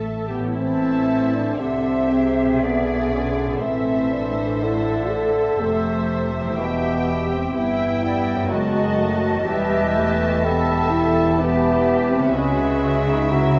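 Muted, con sordino violins open this melancholic, elegiac slow movement for symphony orchestra in a rubato three-four, carrying a lush, veiled melody and a second line over a distant viola accompaniment and a dark cello and double bass foundation. Up front, a French horn section holds warm sustained chords, while a very quiet concert harp rings out mellow arpeggios. At 0.6 seconds the woodwinds join in the background: an airy, expressive flute section and a smooth-topped solo clarinet on supporting lines, and a roomy solo bassoon with soft attack in the accompaniment, the whole passage, cut from a longer piece, bathed in wet scoring-stage reverb with a softened top end.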